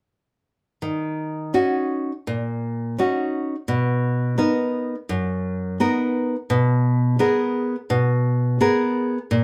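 Mournful and passionate, this brief rubato fado excerpt features a bright, up-front nylon-string guitar fingerpicked in classical style as accompaniment, its finger squeaks audible in a small, reverberant room as it moves through Ebm7, Bmaj7 and Abmadd9/Cb between 0.8 and 9.4 seconds.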